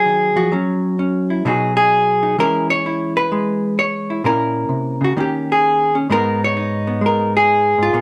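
A clean, dark electric hollow-body jazz guitar sits up front in a moderate studio reverb, its fingered tone compressed. This eight-second excerpt of solo jazz swings at 129 BPM in 4/4 with a late-night mood, the guitar ranging from Ab2 to C#5. The harmony moves from Ebm7 through B6, E6 and Bbdim to Eb7, settling on Abmadd11 at 6.1 seconds.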